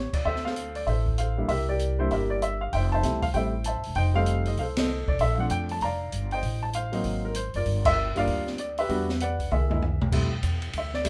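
A warm baby grand piano and a woody, plucked upright bass open this brisk, playful jazz piano trio excerpt in D minor, swinging at 194 BPM in 4/4. The piano carries the melody up front with a natural tone, while the bass sits close by on steel strings, anchoring the low end. An open acoustic drum kit joins almost at once, heard in a studio room with dark cymbals, a high-tuned snare and a boomy kick, and it uses crash, hi-hat, ride and toms. The harmony moves from Dm7 through Fmaj9, Bbmaj7, a G#9 and Gm7 before settling on Fmaj7sus2, with the whole band hitting accents at 4.7 and 7.8 seconds. A drum fill from 9.5 seconds leads into that final chord, and light reverb gives the trio a natural sense of space as the cut ends at 11.1 seconds.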